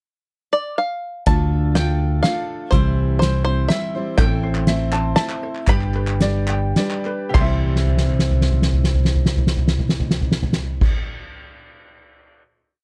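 Uplifting and nostalgic, this short indie folk piece in 3/4 builds its arrangement over about twelve seconds, with a dry, close 1970s-style studio sound. A bright, twangy banjo played with fingerpicks opens with the pickup at 0.5 seconds, carrying a percussive, motif-based melody of call phrases. At 1.3 seconds the band arrives: a picked steel-string acoustic guitar strums eighths in open chord shapes with audible finger squeak, a round, punchy electric bass plays root and fifth on the main beats, and a soft-mallet drum kit sits up front with a fat snare and boomy kick. At 4.2 seconds a light, thumb-plucked ukulele adds rising and falling eighth-note arpeggios while crisp, vintage-toned group handclaps fill in an evenly spread pattern, and from there the tempo slows until the pre-chorus ends. The piece resolves on a final chord with a drum fill, the kit ringing out alone until 12.4 seconds.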